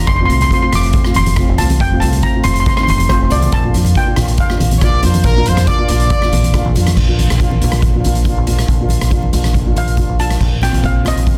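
A straight 4/4 calypso groove drives this bouncy, festive clip, where a bright, shimmering lead steel pan with plate reverb and digital delay rings over a mellow double-seconds pan accompaniment, a round, dark fingered electric bass, a boomy, up-front street-band drum kit with dark cymbals and a softly clipped snare, and low-tuned congas tucked in the background, while a close-miked, pop-style horn section adds a brief second line from 4.8 to 6.7 seconds before the lead pan returns at 9.8 seconds.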